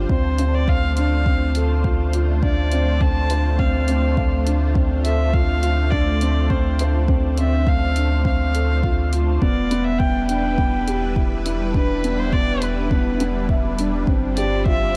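A steady, straight 4/4 pulse at 103 BPM from a deep, tape-warm electronic kick and a faint electronic hi-hat drives this moving, cinematic piano and strings electronica cut in D dorian, where a dark, woody upright piano with audible action noise plays a delayed riff, a round sine sub bass carries the bass line, a thick, detuned sawtooth unison pad with chorus, phaser and sidechain pumping holds sustained chords, and a distant, reedy gut-string violin carries the melody over Dm7 moving to Em7 at 9.4 seconds and G7sus4 at 14.1 seconds.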